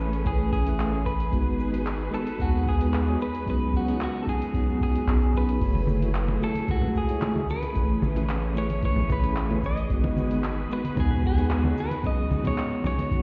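A round, dark analog bass sits up front beneath clean, picked electric guitar melody with delay, tine electric piano, a smooth string section roughened by vintage 12-bit sampler grit, an overdriven deep house kit with handclaps and shaker, a background electronic kick entering at 0.3 seconds and soft-handed congas joining at 5.8 seconds, all shaping a relaxed, wistful sunset chillout excerpt over ninth and seventh chords, heard muffled through a wall in a lush hall.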